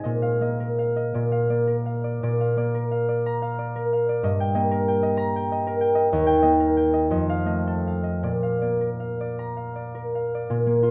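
A mellow, ringing concert harp sits up front in a moderate large-studio reverb, its fingerpicked notes spanning Eb2 to Bb5 in this short, peaceful classical solo cut from a longer piece. In Bb major and 6/8 at a rubato 49-65 BPM, tuned to A4 = 444 Hz, the serene passage moves from an opening Bbsus4 through Eb and F7 before settling home on Bb at 8.2 seconds.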